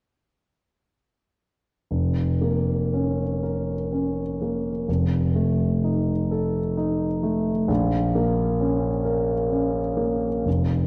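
At 1.9 s a warm grand piano enters up front alone, its long sustain ringing through a wistful, mournful romantic nocturne in a rubato 12/8 that spans F1 to Bb4, set in a wet concert hall with a 2.3-second decay and a dark production, in a brief fragment cut from a longer piece that ends at 10.9 s.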